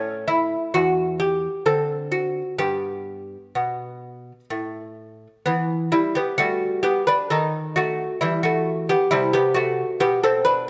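Flowing and radiant, this short excerpt from a baroque-style dance in triple time unfolds with a gently rubato sway on a solo fingerpicked lute, sitting up front with a delicate, gut-strung tone enriched by its double and octave-doubled courses. The harmony settles from the opening toward a clear G major tonic by 2.6 seconds, then turns to the relative minor at 5.5 seconds, passing through a diminished chord before resolving again. A moderate recital-hall reverb surrounds the instrument, lending the plucked strings a soft glow.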